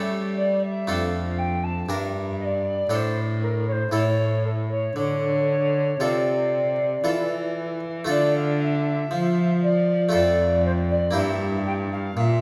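Bathed in the reverb of a resonant recital hall, this grave, introspective excerpt from a baroque-style sonata movement in D minor moves at a slow 59 BPM in 3/4, with a mellow, pure alto recorder singing the melody with expressive vibrato and soft attacks over a bright, plucked harpsichord accompaniment and a rich, focused bowed cello bass, before the music turns to a new section at 8.1 seconds.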